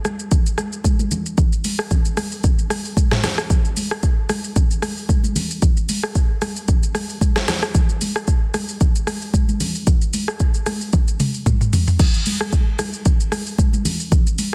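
Dry, dense and heavily limited, this late-night, deep amapiano cut at 113 BPM in 4/4 with a 16th-note swing puts an up-front, layered electronic deep house kit in charge, its deep kick, softly clipped deep snare, metallic hats, rim click, shaker, toms and crash carrying the groove, while bright, thin-skinned acoustic congas played with soft hands sit lower in the mix, before a drum fill at 10.9 seconds leads into a drop at 12.0 seconds.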